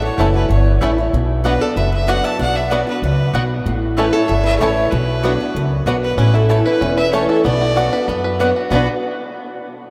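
Lonesome and haunting, this short cut from a longer bluegrass piece moves at a brisk 190 BPM in straight 4/4, circling between A and B minor in the key of B minor. A clear, earthy fiddle carries the melody with light vibrato, set at a distance, while a very quiet lap resonator guitar adds a bright, nasal second line with slide and fingerpicks. Underneath, a boxy, ladder-braced acoustic guitar picks the accompaniment and a woody, thumpy upright bass sits up front, anchoring the low end. Entering at 0.2 seconds, a twangy, percussive banjo plays arpeggios in the background alongside a mandolin adding double-string stabs. The whole ensemble sits in a vast, echoing space, drenched in a long cathedral reverb that deepens the lonely atmosphere.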